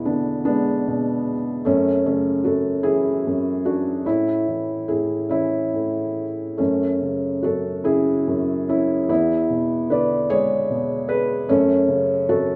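A felt-muted upright piano plays alone from the very start, sitting up front in a lyrical classical miniature cut from a longer piece. The instrument's tone is soft and mellow, with an intimate closeness and light reverb around it, giving the music a calm, warm mood. In 6/8 at a slow 49 beats per minute counted in dotted quarters, the playing moves with a free rubato feel. The harmony circles through F# minor, opening on E7 and passing through F#m9, A and F#m9 again before returning to E7 and settling on F# minor at 11.5 seconds. The piano spans from E2 up to D5, and the tuning sits slightly low at A4 = 437 Hz, lending the brief 12.6-second passage a gently hushed character.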